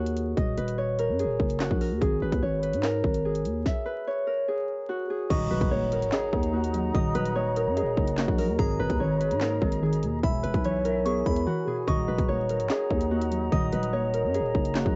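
Cold and dark, this half-time drill cut in Eb phrygian at 146 BPM sets a bright, thumb-plucked Celtic harp melody over a growling, buzzy 808-style bass and an up-front electronic drum kit with hard-clipped kick, sharp snare, bright hats, handclaps and crash, then after a stop from 3.7 to 5.3 seconds a very quiet impact ushers in a warbling, nasal dusty pluck, a pure vibrato-laden small flute group holding chords and a delicate, tinkling synth tine bell with chorus and analog delay, all wrapped in a dry home-cassette sound with vinyl crackle and a muffled top end.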